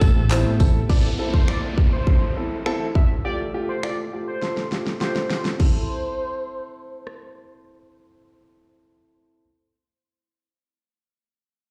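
A straight dance-pop groove in 4/4 is driven by a punchy, layered electronic drum kit with fat snare, handclaps, finger snaps and rim clicks, which carries the energetic, confident mood until 7.2 seconds, with a drum fill from 4.4 seconds. At the very start, a raspy, growling alto saxophone with delay, a dark, foam-muted electric bass, a jingly tambourine in the background and a very quiet, ethereal detuned pad all sound briefly, while a warm concert grand piano, filtered and pumping, carries the chords throughout. From 0.9 seconds a bold, retro octave-doubled sawtooth lead with chorus and vibrato takes the melody over the chord change, joined by an electronic downlifter, all set in a large, lightly reverberant digital space.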